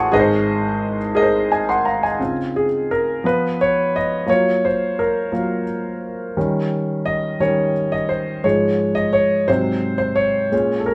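A lone concert grand piano opens on an Ab chord and moves at 2.2 seconds into a reverent, hopeful gospel passage in a straight 6/8, its warm, intimate, natural tone sitting up front with deep bass and audible action noise, as it walks through Dbmaj7, Db9/F, Gbmaj7 and Eb7 before settling on Db/Ab and Ab7 at 9.5 seconds, all inside a moderate studio reverb in this short excerpt from a longer piece.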